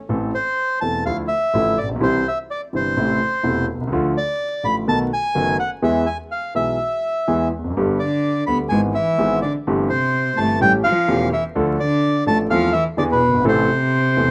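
A reedy, airy bandoneon carries the melody up front, singing in its upper register over a melancholic, dramatic tango in A minor at 126 BPM, played in 4/4 with a rubato feel. Beneath it, a concert grand piano with deep bass and a natural tone supplies the accompaniment, reaching down to the low E1 and sitting up front in the mix. At 8.0 seconds a single bowed cello joins with a focused, close second line marked by vibrato, adding warmth. The harmony moves from Am through Dmadd9, B7 and E before turning to G, E/G#, C6/G and A7, then settling via Am/E and E7 back on Am at 13.5 seconds. A small room ambience, vinyl crackle and a rough home-demo quality frame this short passage cut from a longer piece, tuned to A4 = 438 Hz.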